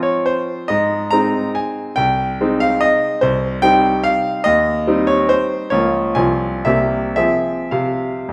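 A bright grand piano opens alone on a high F and carries this graceful, proud romantic dance in triple time, its dotted rhythms pulled about freely with rubato. Sitting up front with a brilliant, natural tone and short sustain, it ranges from deep bass to the upper treble while a wet recital hall reverb blooms around it. Cut from a longer piece, the passage moves through a chain of chords before settling home on the minor tonic at 7.2 seconds.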